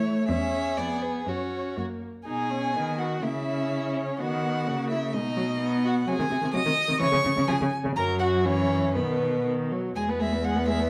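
In a lively 2/4 at roughly 117-131 BPM, this quick classical-period movement for string quartet moves with a flexible, rubato feel, cheerful and graceful in B major. The first violin carries the melody with a soft attack, vibrato and expressive portamento, its tone warm. Beneath it the second violin plays a smooth, even second line that sounds distant, while the viola's rich, expressive accompaniment adds its own vibrato and gliding portamento from further back. The cello supplies a focused, bowed bass with vibrato that sits up front in the blend. A moderate recital hall reverb gives the four single players a natural sense of space, with a faint mains hum beneath. After a short opening phrase the music moves into a new section at 2.3 seconds, briefly sets harmony aside at 7.0 seconds, and returns to B before arriving on E at 10.0 seconds, cut from a longer piece.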